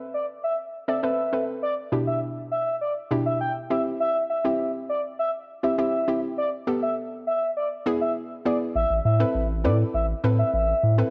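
A home cassette recording with light reverb and a digital ambience gives this short dance-pop fragment a tape-tinged sheen. From the first moment, a hollow, bouncy square-wave pluck carries the accompaniment, its detuned, mellow tone shaped by chorus, a low-pass filter and cassette tape. Over it, an expressive sawtooth lead sings the melody in a smooth voice with vibrato, treated with chorus, tape and analog delay. The mood is driving yet bittersweet as a build-up runs until the drop at 8.8 seconds, where a deep, round analog bass enters up front with a dark, sustained weight. The passage is cut from a longer piece and ends at 11.1 seconds.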